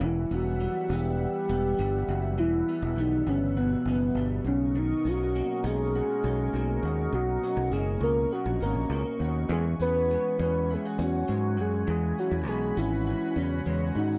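Indie pop with a laid-back, sunny mood, this short cut from a longer piece moves at 101 BPM in a straight 4/4, tuned slightly sharp to A4 = 441 Hz. A soft, octave-layered synth lead carries the melody up front, its round, dark tone thickened by a sub octave and detuned layers, with subtle chorus, vibrato and a slapback echo. Beneath it, an electric guitar through a small old amp plays picked, compressed accompaniment that sounds slightly broken-up, colored by analog chorus and a vibrato effect. A fingered electric bass sits direct and growly near the front, while a phased analog pad with a slow attack and long release adds swirling, evolving sustained chords further back. The harmony moves from Emadd9 to Bmaj9 at 4.5 seconds and settles on E69 at 9.5 seconds, all captured in a dry, close 1970s-style studio sound with little reverb.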